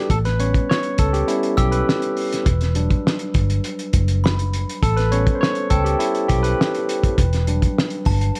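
Bittersweet and silky, this short cut from a longer 1970s-style soul piece moves at 102 BPM in a straight 4/4, with a bright, barky tine electric piano played through a combo amp taking the lead up front as it moves between A7 and Em9. Underneath, a foam-muted vintage fingered electric bass sits round and punchy, while a cloth-damped drum kit of hi-hat, kick and snare sounds thuddy, muffled and gritty, with a fat snare, tight kick and rolled-off top. A metallic, bell-like glockenspiel struck with brass mallets rings in the background from a boxy small room, and the whole recording stays dry, with little reverb.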